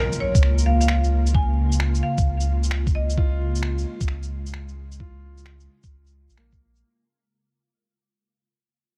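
Future garage in Bb minor at 131 BPM, with a swung 16th-note feel and a ghostly, rainy mood, heard in a short excerpt cut from a longer piece that fades out across its length while vinyl crackle hisses underneath. A very quiet electronic impact opens the clip, ending at 1.3 s. An ethereal, airy pad holds sustained chords with slow attack, detuned unison and a noise layer, softened by ensemble chorus and built-in reverb and shaped by sidechain pumping. A bright, woody upright piano with a vintage character plays accompaniment through analog delay. A percussive rosewood marimba struck with hard mallets carries a brief melody from 0.2 to 3.2 s, trailed by tape echo. Up front, a muffled, thumpy, pitched-down kick and a round sine sub bass anchor the low end, while a compressed, tape-warm shaker and finger snaps sit in a small room, and the mix overall stays fairly dry.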